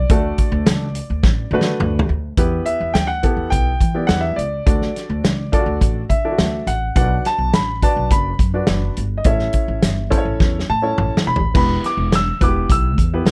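Uptempo 1960s-style soul in D major at 105 BPM, joyful and uplifting, cut from a longer piece. A clear, intimate grand piano carries the melody over a warm upright piano's accompaniment with audible action noise and short sustain, while a growly, woody pizzicato upright bass holds the low end. An up-front acoustic drum kit with a fat snare and punchy kick, recorded in a small room, adds fills at 1.2 and 10.4 seconds as the dry mix moves through D, Em, Bm and A.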